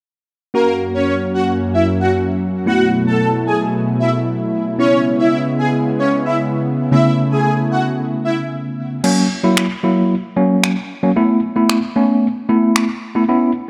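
In a straight 4/4 at 113 BPM, this bittersweet yet energetic dance-pop fragment opens at 0.5 s with a smooth, detuned supersaw melody carrying tape echo over a worn, slightly out-of-tune tine electric piano and a slow-attack analog pad thickened by chorus, until at 9.0 s the pad and lead have dropped away and a layered, overdriven deep house kit of crash cymbal and finger snaps joins the piano, in a dark production bathed in lush hall reverb.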